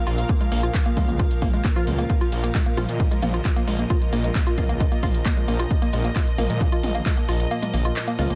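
A woody wave-folded pluck riff with overdrive and delay opens this relentless, dark peak-time techno passage over a resonant overtone-sweeping drone and a dark bowed string section. A thick, menacing detuned saw bass and a techno kit of handclaps, metallic hi-hats, ride cymbal, shaker and toms join them, all pumping alongside a punchy, up-front electronic kick. A muted, phased dub chord stab sits in the background from 1.0 s, and the kick drops out at 7.5 s in this dense, heavily limited and fairly dry mix.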